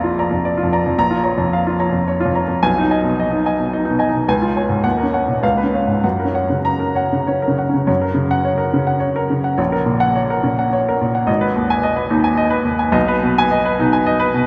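A clear baby grand piano opens this brief romantic character piece alone, its short sustain ringing into a vast, echoing cathedral space whose long reverb hangs behind every note. The mood is brooding and stormy, set in F# major and 3/4, with rubato pulling the tempo freely between roughly 95 and 115 BPM. The harmony drifts from Bb through A#m and G#m/B toward C#, D#m7 and C#7 before arriving on F# at 6.0 seconds. A second section begins at 7.9 seconds, moving through F#/A# and G#m and closing on G#m/B. The piano sits up front with a natural, unadorned tone, ranging from G#1 up to Bb5, and the passage is cut from a longer work, ending at 14.5 seconds.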